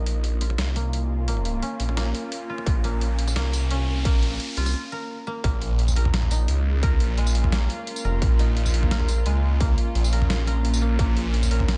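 A thick, swirling detuned saw bass sits up front in this tense, cinematic half-time drum and bass excerpt, beneath a bright, string-like bowed drone with vintage sampler grit and sidechain pumping, and dry, woody fingerpicked koto arpeggios that carry a filter sweep and delay through the build-up. Gritty, pitched-down boom bap sampler drums with high-passed snare, hi-hat, tambourine and toms begin at 0.1 s, a distorted, tape-warm electronic kick recorded in a large room arrives at 2.7 s, and an electronic riser leads into a brief break before the drop at 5.4 s. An eerie, metallic FM drone with chorus later joins very quietly, all set in a digital ambience.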